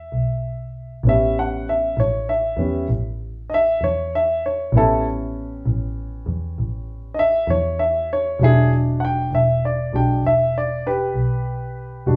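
Slow blues in 12/8 at 65 BPM, laid-back and soulful, with the upright piano taking an intimate solo over changes moving from E to A7 at 1.1 s and on to E7. The piano is up front and warm, with audible action noise and a natural, woody tone, while the bowed double bass, also up front, holds the low register with a dark, woody vibrato. The two play live in one room under moderate large studio reverb, and this brief fragment is cut from a longer performance.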